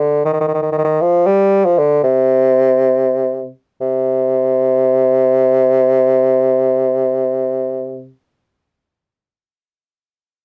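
Turkish music in free time with a melancholic, longing mood, this short excerpt from a longer piece features a clear, up-front solo bassoon played in classical style with vibrato, spanning C3 to G3, framed by light reverb and a dark, warm production.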